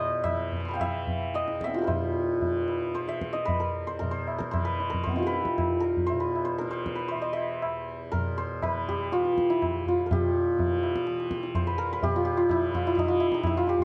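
Solemn and meditative, this fragment of a longer Hindustani classical performance in raga todi sets an up-front, shimmering hammered santur melody over a softly plucked, buzzing tanpura drone, with high-tuned, ringing tabla entering at 0.2 seconds as the pace steadily quickens, all heard through light reverb and the warbly pitch drift of worn old cassette tape.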